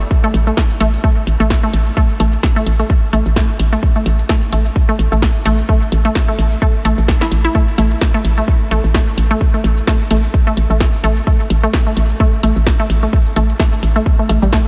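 A hollow, knocking FM bass sits up front in this sparse, hypnotic minimal techno fragment, its dark, fast-attack, decaying notes around A1 given tube saturation and sidechain pumping over an A5 chord, at 129 BPM in 4/4 with a 56% swing on the 16ths and tuning at A4 = 439 Hz. A layered electronic kick drives from 0.1 seconds, while an analog drum machine adds tape-warm hi-hat, shaker and a punchy snare. A squelchy, resonant blip pluck built from detuned square, sawtooth and triangle waves plays a riff between G3 and E4 from 0.2 seconds, coloured by chorus, tape echo and pumping, all set in light digital reverb.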